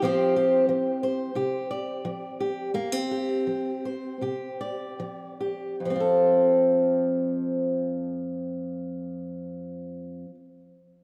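A rough home-demo mix bathed in a lush, wet hall reverb frames this brief, hopeful folk fragment in F major, with a straight 4/4 feel and a tempo that slows between 72 and 91 BPM over the first 5.8 seconds. A fingerpicked steel-string acoustic guitar plays solo and up front through tape echo for the full 10.4 seconds, its warm tone ranging from F2 to D5, with audible finger squeak. The harmony rests on Fsus2 before settling onto F at 5.8 seconds.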